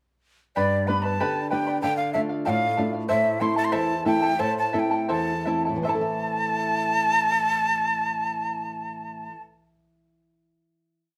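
A straight two-beat pulse carries this short, complete Andean folk piece, which feels festive yet tinged with melancholy. A large quena sits up front with the melody, its wooden, breathy tone bright and crisp, with chiff on the attacks and expressive vibrato as it sings short, song-like motifs. Beneath it a charango adds shimmering double strings, some doubled at the octave, mixing fingerpicking and rhythmic strumming on open chord shapes. A dark flamenco guitar, also up front, fingerpicks an oompah of bass notes and chord figures. The harmony moves from G through Dm to Am, and the trio slows between 3.1 and 5.8 seconds before closing on a final chord, the guitar ringing until 9.6 seconds. Played live together in one room, the ensemble is wrapped in a wet studio reverb.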